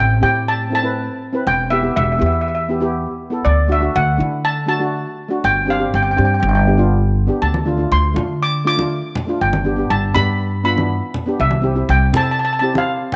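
Calypso in a sunny, festive mood, this short passage comes from a longer piece and moves in a straight, steady 4/4. A lead steel pan carries the melody high in its range, its hard rubber sticks drawing a bright, shimmering, airy tone that sits up front. Beneath it, cello pans played with soft rubber sticks supply mellow, boxy accompaniment, while a pizzicato upright bass with steel strings adds a woody, thumpy low end. Congas enter at 7.5 seconds with a thin-skinned, low-tuned sound that feels vintage and band-limited. The harmony drifts from Am7 through Em, D and a Gsus4 resolving to G, then Dm7 and G before settling on C6, all bathed in a moderate echo chamber reverb.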